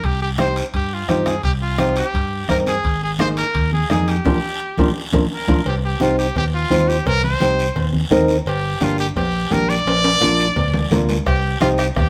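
Cumbia with a driving, fiery mood, moving at 171 BPM in 4/4 and set in C minor, heard as a short cut from a longer piece played live in a moderate stone room. A bright, punchy trumpet carries the melody up front, singing with vibrato and scooped notes in a pop style, while a thumb-plucked flamenco guitar with fresh strings and audible finger squeak sits equally forward from 0.4 seconds, supplying accompaniment over chords that move from C minor through Absus2 and Bb6 before returning to C minor and passing through G minor and Bb. Underneath, a fingered electric bass gives a warm, amped, punchy low end. The percussion blends raspy, dry guiro, ringing low-tuned congas struck with hard hands, and metal-shell timbales with cowbell, the latter two set back in the mix, while a soft-beater bombo drops out at 5.6 seconds and returns at 11.3. Drum fills arrive near 4.3 and 9.9 seconds, the first joined by a full-band accent that pushes into the second section at 5.7 seconds.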